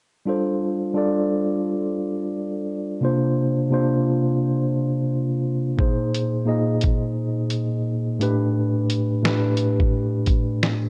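Lo-fi hip hop at 87 BPM with a swung 16th-note feel, this hazy, melancholic excerpt opens with a mellow, up-front tine electric piano, softened by cassette tape and a low-pass filter, drifting through suspended ninth chords from G9sus4 to A9sus4, before a compressed, muffled sampler-style drum kit with a thumpy kick, fat snare and hi-hat joins at 5.8 seconds, all set in a moderate plate reverb.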